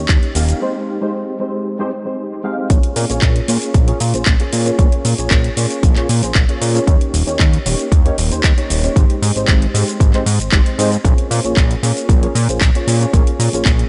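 Lightly reverberant and softly rounded at the top, this cut from a longer nu-disco track moves at 115 BPM in 4/4 in Bb dorian, with a cosmic, sensual mood. A reedy, mellow electric piano with ensemble chorus, sidechain pumping and tape echo plays chords through Eb7, Abmaj7 and Bbm7 over a fat, detuned, up-front sawtooth bass with a filter sweep, both sounding from the start. A punchy, up-front electronic kick and a house kit of handclaps, metallic hi-hats and shaker enter at 0.1 seconds, and a short break from 0.6 seconds gives way to the drop at 2.7 seconds, which carries through to the end.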